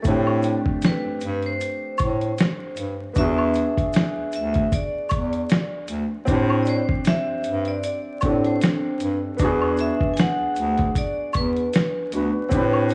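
Reflective and melancholic, this lo-fi hip hop excerpt swings gently in 4/4 over alternating Am7 and E9 chords, steeped in worn, warbling cassette tape with vinyl crackle, pitch drift and light reverb. A metallic, ringing vibraphone played with hard mallets carries the melody through analog delay until 12.1 s. A woody upright piano with its own cassette coloring plays the accompaniment, a close-miked, jazz-style bass clarinet with vibrato and scooped notes holds the bass, a gritty, compressed sampler-style drum kit with a thumpy kick and fat snare sits up front, and close acoustic maracas and woodblock fill out the texture.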